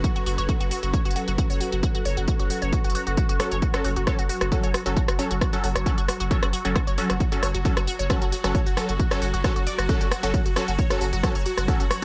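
Straight 4/4 peak-time techno, intense and relentless, opens on a heavy, up-front electronic kick and a tape-warm kit of smooth hi-hats and rim clicks, while a thick, saturated sine sub bass, a squelchy, detuned resonant blip pluck riff with phaser, overdrive and delay, a tense, granular swarming drone and a mellow, ethereal pad with chorus all pump under sidechain until the pad drops out at 3.2 seconds as the drop hits, and from 3.4 seconds a punchy, unison supersaw stab with phaser and delay takes its place in the fairly dry mix.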